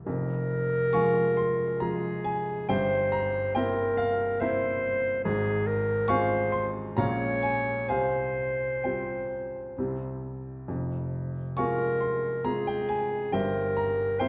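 A wet recital-hall reverb with a decay of about 1.6 seconds surrounds both instruments, while the clarinet and baby grand piano still sit up front. This is an elegiac, yearning romantic classical duo in F minor and 3/4, moving at a slow 63 to 72 BPM with a rubato feel, cut from a longer piece. The piano opens the passage at 0.0 seconds with a natural accompaniment spanning from F1 up to Db6. The clarinet carries a warm, solo melody in classical style from 0.1 seconds, held within the narrow span of Ab4 to Db5 and sitting slightly above the piano in level. The harmony circles from Fm to C7/G, through Fm/Ab and Bbm7, then settles on a Csus4 that resolves to C before returning to Fm and closing on C7/G at 13.3 seconds.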